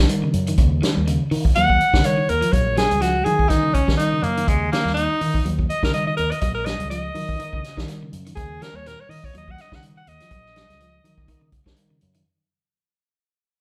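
A live band plays together in one large studio room, with a moderate reverb that gives the sound a natural, roomy glow as it fades out across this short clip cut from a longer piece. It is a driving, funky afrobeat groove in four, swung lightly on the sixteenths. An acoustic vintage drum kit sits up front with hi-hat, a tight kick and a medium-tuned snare, while a fingered electric bass, round and punchy, anchors the low end. In the background, an electric guitar played with a pick adds arpeggios in a slightly broken-up, warm tone. From 1.6 seconds an edgy alto saxophone takes the solo up front, forceful and pop-styled with vibrato, running until 11.5 seconds over a single Ebm7 harmony.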